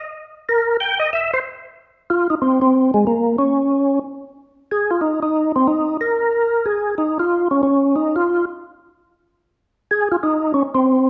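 A percussive tonewheel organ carries this soulful, late-night jazz excerpt, playing alone from 0.5 seconds to the close at 11.1 seconds. Its tone is full and lightly overdriven, with a second-harmonic percussion click, a chorus vibrato shimmer and a slow rotary speaker, and it sits up front in the mix. The melody ranges from Ab3 up to G5 over a brisk 184 BPM in 4/4 with a swung eighth-note feel. The music shifts into a new section at 1.7 seconds and stays there to the end of this cut from a longer piece. A moderate large-studio reverb with a 1.3-second decay surrounds the organ, and the instrument is tuned slightly low, to A4 = 439 Hz.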